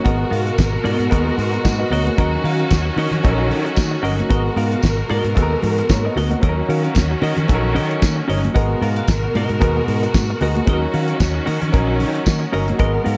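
Lightly reverberant and glamorous, this danceable disco excerpt at 113 BPM with a gently swung 16th feel rides on a dry, damped 70s drum kit with a fat snare and tight kick up front, a punchy, amped fingered electric bass, a lush, bowed symphonic string section with biting vibrato holding sustained chords, a natural grand piano, a clean, picked and compressed electric guitar tucked in the background, very quiet high-tuned congas and a jingly tambourine, all over a repeating G#m9 to D#m7 progression.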